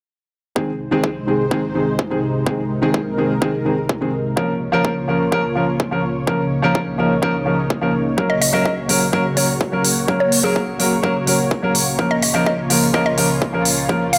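A clear, worn grand piano sits up front with sidechain pumping and delay over a lush, detuned unison pad that carries a filter sweep through sustained Ab, Bbm and Gb chords, while a punchy electronic kick drives this powerful, emotional 126 BPM festival progressive house passage, until at 8.3 seconds a woody, mallet-like synth pluck takes the melody and crisp hi-hats join at 8.4 seconds.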